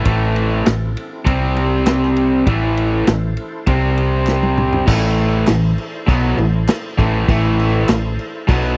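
A crunchy, up-front overdriven guitar and a bright, raw garage guitar drive a gritty classic rock riff at 100 BPM in A minor, moving between Am and C5 over a round, punchy hollow-body bass, while a very quiet tonewheel organ holds sustained chords through a slow rotary speaker, a muffled, lo-fi vintage drum kit with dark cymbals plays a fill at 4.3 seconds, and crisp group handclaps sit in the background of this dry, close small-room excerpt.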